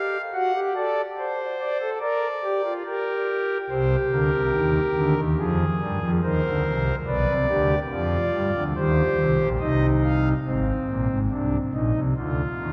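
Classical baroque-style three-part fugue in C minor at 71 BPM in a straight 4/4, serious and solemn, played on pipe organ foundation stops with a thick, romantic voicing that sits up front and spans Ab1 to F#5, bathed in a long church reverb of 3.6 seconds, with a new section arriving at 10.5 seconds in this passage cut from a longer piece.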